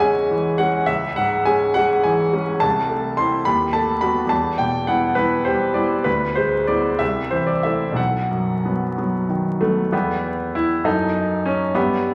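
Romantic classical character piece for solo piano in E minor, moving in 6/8 at roughly 59-71 BPM with free rubato and a warm, hopeful mood. The grand piano sits up front with a clear, intimate tone, where the noise of its action can be heard, ranging from deep bass to the upper treble as the harmony drifts through borrowed and chromatic chords, landing on E minor at the start of the new section before moving to a diminished chord. A lush recital-hall reverb surrounds the instrument and vinyl crackle runs underneath, and a new section begins at 9.9 seconds, shortly before this fragment of a longer piece breaks off at 12.1 seconds.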